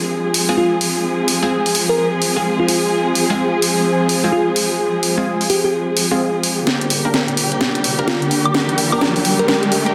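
Swaggering and bouncy, this bass house excerpt moves at 128 BPM with a swung 16th-note feel in G phrygian, as dark, bowed studio strings hold up-front chords with vibrato and portamento over a warbling, nostalgic lo-fi pad bathed in chorus. An overdriven house kit with a cracking snare, hi-hat and woodblock enters at 0.3 seconds, joined by punchy, detuned orchestra-hit-like stabs with a moving notch filter in the background and a sparkling, bell-like FM electric piano melody carrying chorus and digital delay. From 6.7 seconds the harmony shifts from Fm to Gm for a build-up with a drum fill, and an electronic riser enters at 7.4 seconds, all within a dense, heavily limited modern mix under plate reverb.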